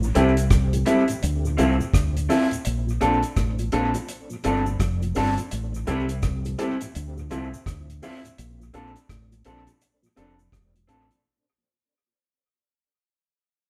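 Swung sixteenths drive this tender, romantic lovers rock reggae in 4/4, with a dark, dry drum kit up front laying down tight kick, hi-hat and rim click touched by dub echo, while a round, punchy fingered bass anchors the low end and a cabasa adds soft small-room shake. A lo-fi, slightly broken-up electric guitar through a small old amp plays picked stabs, a warm baby grand piano sits in the background, and a mellow tonewheel organ with slow rotary and chorus vibrato hums very quietly beneath. The band plays live in one room with moderate reverb, cycling through Am7, Dm9 and Bbmaj9 as this cut from a longer piece fades out across its full 11.2 seconds.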